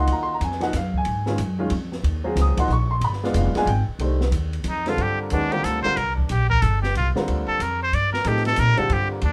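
This short excerpt of modal jazz in 3/4 moves at 184 BPM with swung eighths and a searching, intense mood. It is tuned to A4 = 441 Hz and sits in Eb dorian before shifting to C dorian at 4.0 s. An upright piano, clear with short sustain, accompanies up front through Eb9sus4 and G7b9 before landing on Cm9. A pizzicato upright bass with steel strings sounds growly and thumpy in the low register. An open acoustic drum kit, sitting lower in the mix, brings dark cymbals on ride and hi-hat, a high-tuned snare and a boomy kick. At 4.7 s a trumpet with a straight mute enters for a nasal, brilliant solo, present at the front of the moderate club reverb.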